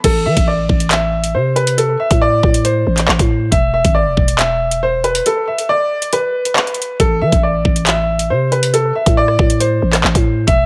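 A baby grand piano with an open, long-sustaining tone and digital delay carries the melody up front over a growling, buzzy 808-style bass and an electronic drill kit of knocking kick, metallic hi-hats, handclaps, rim clicks and crash cymbal, in a cold, dark half-time drill passage at 138 BPM in A minor, set in light reverb, with a break from 5.3 to 7.0 seconds as the harmony moves from Am to E5 and back.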